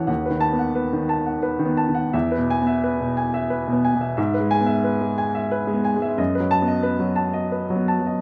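Close, detailed microphones place a woody upright piano up front, with a moderate recital hall reverb giving each chord a natural bloom of about 1.4 seconds. This is a romantic character piece for solo piano in E major, passionate and warm in mood, moving at 88 BPM in 3/4 with uneven beats and a free, rubato feel. The piano carries everything alone for the full 8.2 seconds, ranging from D#2 up to A5. The harmony moves from B7 over D# to E at 2.1 seconds, then to E over G# and on to B7 over F# at 6.2 seconds. Cut from a longer work, the passage feels like a single breath within an unfolding phrase.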